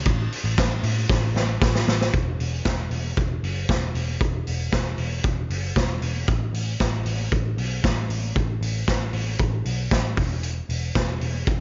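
A straight 4/4 beat from a saturated, gritty vintage drum kit drives this youthful, nostalgic fragment of jangly indie pop, with a punchy kick, a medium-tuned snare and dark cymbals sitting up front, and a drum fill from 1.1 to 2.1 seconds leading into the next section. Beneath it, a foam-muted, picked electric bass sounds round and amped, keeping to the low register. Light reverb and a dulled top end give the recording a soft, aged sheen.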